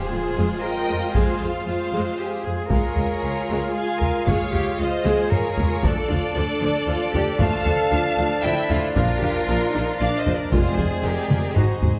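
An excerpt from an epic orchestral film score, set in a moderate scoring-stage reverb, opens on a huge, dark impact as the full string body sets a dramatic, heroic mood in F minor at 115 BPM in 3/4, the chords moving from Fm through Db, Dm and Bb back to Fm. A studio violin section carries the warm, vibrato melody over a second violin line, with focused violas in the background, a rich chamber cello section and a distant symphonic double bass section holding the bass, while a mellow French horn section and a roomy woodwind section sustain chords. The close taiko ensemble, struck with hard sticks, drives things from 1.1 s with fills around 5.1 s and 11.3 s, and articulate, dry timpani on hard mallets join briefly at 10.5 s.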